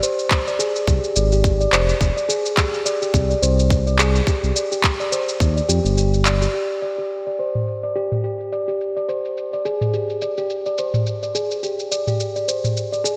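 A round, ringing steel tongue drum struck with firm rubber mallets plays meditative arpeggios through low-pass filtering and digital delay in this mystical, warm organic downtempo excerpt at 106 BPM with a swung sixteenth feel, alongside an up-front electronic afro-pop kit of handclaps, shaker and toms, a tight overdriven electronic kick heard from 0.3 to 5.5 s, and a smooth, mellow sawtooth-and-triangle synth bass that pumps until 6.5 s, when filter sweeps take over both the tongue drum and the kit inside a lush hall reverb and bright 1980s-style digital production.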